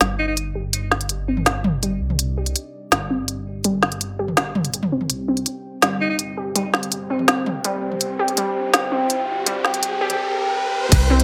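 A half-time drum and bass groove from an up-front organic electronic kit, with a woody snare and crisp hats, drives this spacious, cinematic build-up: a moody detuned analog pad pumps with sidechain, a warbling lo-fi pluck with tape echo plays arpeggios as filter sweeps work on both, a rumbling detuned saw bass holds the low end, a bright alto saxophone with vibrato cuts in twice for brief scooped notes, an electronic riser builds from 7.6 seconds, and a tight, layered kick lands at 10.9 seconds, all in a moderate digital room reverb.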